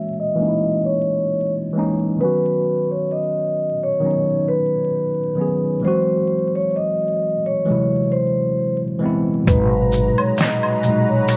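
Vinyl crackle and a light, small-room reverb frame this hazy, reflective lo-fi hip hop excerpt at 66 BPM in G# minor, with a filter sweep running through its first 9.5 seconds. A mellow, ringing vibraphone played with soft mallets carries the melody over a worn, slightly out-of-tune tine electric piano that sounds as if heard on cassette, as the harmony moves from F#7 through Badd9 and G#7alt. At 9.5 seconds the groove arrives on a G#m9 chord: a muffled, pitched-down sampler drum kit with a thumpy kick and fat snare, a woody pizzicato upright bass note that stops at 10.1 seconds, a smooth detuned sawtooth pad with chorus and tremolo, and saturated maracas and woodblock.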